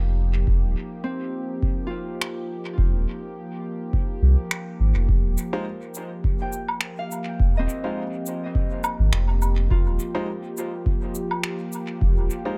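The warm sub bass stands out most, a deep, round sine tone with a fast attack that sits up front from the very start of this hazy, meditative ambient dub excerpt at 104 BPM in 4/4, with a light 16th-note swing. Beneath it a smooth sawtooth analog pad, softened by chorus, fades in on sustained chords from F3 to G4, opening on an F7 with its third omitted. An electronic kick drum with a tape-warm, deep thump joins at 0.5 seconds, and a thumb-plucked Celtic harp follows with ringing arpeggios carried on tape echo. From 2.2 seconds, airy finger snaps, cabasa and woodblock add a polished percussion layer thrown into dub echo. At 5.5 seconds a brilliant upright piano cuts in with intimate, woody stabs, its action noise audible and its repeats also sent through dub echo, in a dry, echo-heavy mix.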